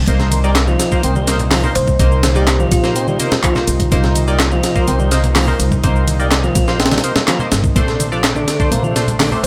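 A dry, close-sounding cut from a longer breakbeat track, raw and energetic at 125 BPM in C dorian, moving from Cm7 to Bbmaj9 at 7.8 seconds. Up front sit a gritty, compressed sampler-style breakbeat kit with a thumpy kick and high-tuned snare, and a growly, woody pizzicato upright bass with tube saturation, while an overdriven analog drum machine adds handclaps, ride and shaker and very quiet, soft-handed congas fill in beneath. A lightly overdriven tonewheel organ with key click and delay plays a riff, a nasal, band-passed sawtooth stab with chorus and phaser punctuates, a lush, warbling unison pad pumps with sidechain in the background, and a hollow, ringing kalimba with a small-speaker tone carries a brief melody from 1.8 to 3.6 seconds, returning for a moment at the very end.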